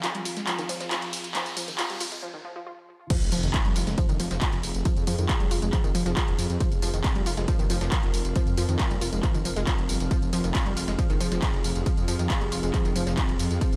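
A straight 4/4 pulse at 137 BPM drives this dark, industrial slice of peak-time techno in F minor, cut from a longer piece. The opening build-up pairs a background riser with a filter sweep on a synth arpeggio, and a brief break from 2.2 seconds gives way to the drop at 3.1 seconds, where a heavy, tape-warm electronic kick lands up front with an impact. A thick, menacing detuned saw bass arrives alongside it, beating and saturated, while a lush, punchy unison pluck riff carries tube saturation and digital delay through the whole passage. A punchy analog drum machine fills the top with crash, ride, hi-hat, handclaps and tambourine in a large room, backed by a very quiet, gritty sampler-style kit with a fat snare and hi-hat. Further back, a swarming, tense granular drone and a nostalgic, lo-fi pad with chorus and ring modulation hover in the background. Sidechain pumping runs through the bass, pluck, drone, pad and the machine's hats, percussion and cymbals, and the whole mix sits in light reverb with a high-pass filter.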